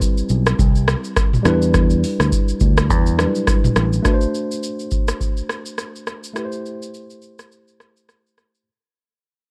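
A swung 16th-note groove at 104 BPM in 4/4 drives this sultry, hypnotic afrobeats excerpt, set by a booming analog drum machine with a deep kick, metallic hi-hats, rim clicks, shaker and toms, its sound re-recorded in a small room and placed up front. A fingered electric bass, punchy and direct, joins at 0.3 seconds and sits prominently in the low register before dropping out at 4.0 seconds. Throughout, a tine electric piano provides accompaniment, worn and slightly out of tune yet clean, as the harmony moves from Cmaj7 to Em7, then to D7 as the second section begins and on to Am7 at 6.4 seconds. From 4.1 seconds the music fades out over its closing half. The whole recording carries a warbling old-cassette character with pitch drift and little reverb, giving it a dry, close feel.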